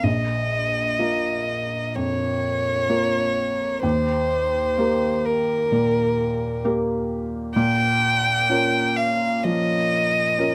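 Longing and reflective, this brief passage of neoclassical piano and strings moves with a rubato feel over chords of Bbm, Eb and back to Bbm, cut from a longer piece. A single violin carries the melody up front, bowed sul tasto with a soft attack, an airy tone and light vibrato, while a felt-muted upright piano gives mellow, intimate accompaniment, both sounding from 0.0 s to 10.5 s. Close, detailed microphones and light reverb keep the sound near and tender.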